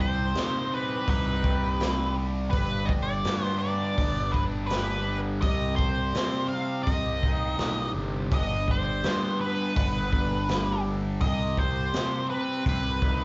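Dark and trippy, this psychedelic rock excerpt moves at a straight 83 BPM in 4/4, cycling between C minor and G before landing on a C power chord near the end. An up-front octave-fuzz lead guitar carries the melody between B4 and F5, its dark, distorted tone colored by wah. Underneath, a double-tracked fuzz guitar plays a bright, phased riff from G2 to G4, while a fuzz picked electric bass sits forward with an overdriven, warm growl down to G1. A crunchy breakbeat drum kit enters at 0.4 seconds with hi-hat, a tight kick and a medium-tuned snare, sounding saturated and gritty with a rolled-off top. The band plays live in one large studio room with moderate reverb, and the whole mix stays dusky, with nothing above 7.7 kHz.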